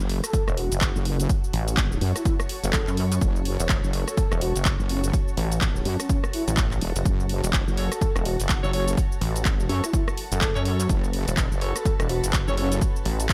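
A heavy, detuned wobble bass opens this gritty, swaggering bass house excerpt together with a tape-warm house drum kit of handclaps, hi-hat, rim click and shaker, while a cloudy, blurred granular pad shimmers in the background, all over a single minor chord with a swung groove. A punchy electronic kick and a saturated, pulsing pluck wobble bass join almost at once, the pluck bass pumping with the sidechain alongside the up-front wobble bass, as a breathy, flute-like synth lead with vibrato and tape echo drifts softly behind them. At 7.8 seconds a tight horn section adds smooth, octave-doubled stabs.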